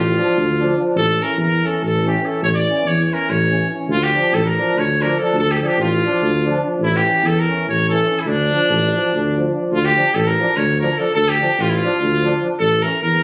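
A bright trumpet melody and a mellow, punchy tuba bass line open this fiery, virtuosic Balkan brass band excerpt in D harmonic minor, moving in a brisk 7/8 at 288 eighths per minute with a straight feel. The trumpet sits up front, distant and roomy, ranging from D4 to D5, while the tuba carries a light vibrato from A1 to E2. At 0.2 seconds a brilliant trombone and a clear, vintage-toned euphonium join as background accompaniment, both playing in a classical style and holding narrow ranges until 12.9 seconds. The harmony moves between D minor and A, and the phrase repeats at 9.7 seconds before closing on an A5 chord. The sound carries a moderate recital hall reverb and compression, with the roomy character of a phone recording made in the hall.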